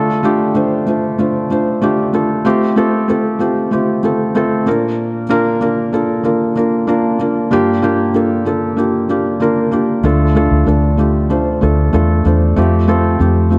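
Uplifting and hopeful, this piano-driven pop passage moves at 95 BPM in a straight 4/4, tuned slightly low to A4 = 435 Hz, and is cut from a longer piece. A felt-muted upright piano carries the accompaniment throughout, soft and intimate, placed up front, with its action noise audible beneath the mellow tone as it spans G2 to C5. The harmony moves through Dm, Fadd9, Bb and Gm7, returning to Dm at 10.0 seconds, where a vintage fingered electric bass enters, foam-muted, round and punchy, with an amped edge as it sits between D2 and F2. A moderate, lush hall reverb with a 2.1-second decay surrounds the parts, and the dark, warm production keeps the sound cushioned and close.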